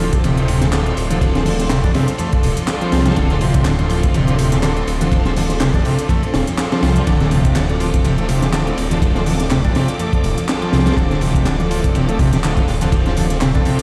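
Heard through a big sound system in a bare stone room with vinyl crackle over it, this energetic, swaggering breakbeat excerpt rides a swung 123 BPM groove in D minor pentatonic, resting on a single Dm7 chord. A crunchy, saturated breakbeat kit with a punchy kick and high-tuned snare sits up front beside a swirling, detuned phased saw bass, while a crisp garage kit adds handclaps and hi-hat and very quiet congas with a thick skin sit underneath. A buzzy vintage combo organ riff with sampler grit and delay, soft sul tasto stabs from an intimate chamber string section, and lush, pumping symphonic string chords in the background fill out the harmony.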